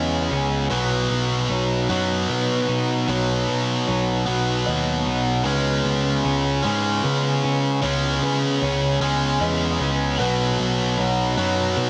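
A biting overdriven guitar riff leads this euphoric, cinematic rock passage in B major at 76 BPM in 3/4, cut from a longer piece, over fuzzy overdriven picked electric bass, with a twangy lo-fi electric guitar arpeggiating through spring reverb and digital delay, a boxy felt-muted upright piano adding arpeggios with audible action noise and delay in the background, and a very quiet icy, crystalline pad sustaining chords as the harmony moves between C#m7 and Bmaj7 in a moderate plate reverb.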